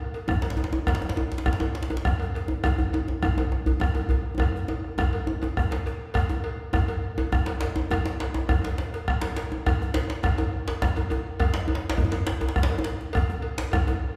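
A driving 12/8 pulse anchors this powerful West African drum ensemble passage, cut from a longer piece, with a metallic, compressed and saturated cowbell ringing alongside a deep, dark bombo that sits up front with its own compression and grit. Two djembes fill out the groove: a medium-tuned one placed up front with a small-room character, and a tight, cracking one with metal rattles heard closer yet tucked into the background. A drum fill leads from 4.4 s into a second section at 6.2 s, another fill arrives at 12.7 s, and the whole ensemble sounds from further back in a reverberant recital hall.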